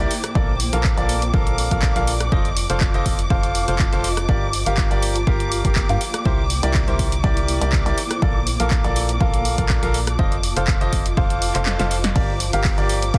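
A dense, heavily limited modern mix with light reverb carries this soulful, bittersweet piano house cut from a longer piece, moving at 122 BPM with a gentle 16th-note swing through Bbmaj7, F7, Gm7 and C7 chords. A bright, woody upright piano plays the riff through dub echo over a hollow, organ-like FM bass with tube saturation, while muted, con sordino violins hold lush sustained chords and a cloudy granular pad drifts in the background, all pumping against the sidechain. A tape-warm, punchy analog drum machine with handclaps, hi-hat, ride, rim click and snare joins at 0.1 seconds and the electronic kick at 0.4 seconds, then the kick drops out for a drum fill from 11.7 to 12.2 seconds.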